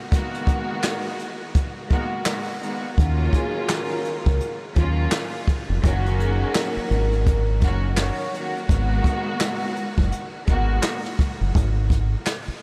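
A swung 84 BPM boom-bap hip-hop groove in 4/4 rides on an up-front brushed jazz kit with a boomy kick, medium-tuned snare, hi-hat and handclaps, while a distant, lush bowed string section with vibrato plays from the start over a G# dorian progression. At 3.0 s a round, deep fingered electric bass joins up front, and from 3.3 s to 8.3 s a mellow vibraphone with soft mallets, slow motor vibrato and delay rings in the background. The dark, reflective mood is soaked in a huge ambient reverb that gives the mix a dreamy haze.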